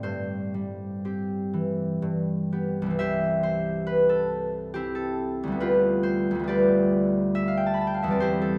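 Set in a stone room with a moderate reverb and a dark, warm production, this graceful, serene classical excerpt features a solo concert harp, bright, ringing and up front, fingerpicked across a span from C2 to B5 in C major, moving in a rubato 3/4 at roughly 59-71 BPM through chords from C/G to G7/D over 8.6 seconds, cut from a longer piece.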